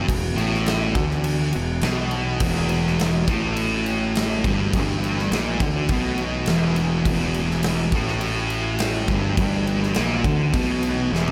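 Sludgy and brooding, this short stoner and doom metal cut at 103 BPM in E minor rests on a single Em chord, with a thick, double-tracked fuzz guitar riff up front, a growly overdriven fingered bass beneath it, a big acoustic rock kit with bright cymbals and a tight kick, and a very quiet, flute-like tonewheel organ holding sustained chords through its slow rotary speaker, all in a dry room until a drum fill arrives at 11.1 seconds.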